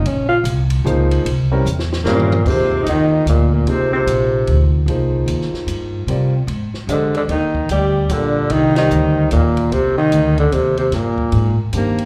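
A mellow, distant alto saxophone solos first in this cool, searching modal jazz waltz, its subtone lines carrying a slapback echo over woody pizzicato upright bass and a compact cocktail drum kit with dark cymbals and a punchy kick. After a drum fill at 1.7 seconds, a growling, raspy tenor saxophone takes the melody up front at 2.1 seconds, breathy with vibrato and scooped notes, while a warm grand piano with long sustain accompanies and the band hits an accent at 8.7 seconds. Heard through a club PA with moderate room reverb, this swinging live cut from a longer piece holds its cool, searching mood throughout.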